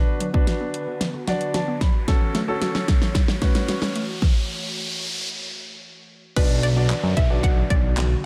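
A confident, driving dance-pop passage opens with a warm grand piano, its accompaniment pumping against the beat, and bouncy, bright square-wave pluck arpeggios with echo and chorus, while a punchy, layered pop kit of fat snare, metallic hats, handclaps and crash rolls through a fill, a glassy, ethereal FM pad sits in the background, and an electronic riser builds through a stop at 4.2 seconds into the drop at 6.4 seconds, where a fat, nasal analog bass and a hollow, warbling, vintage-toned pluck melody arrive.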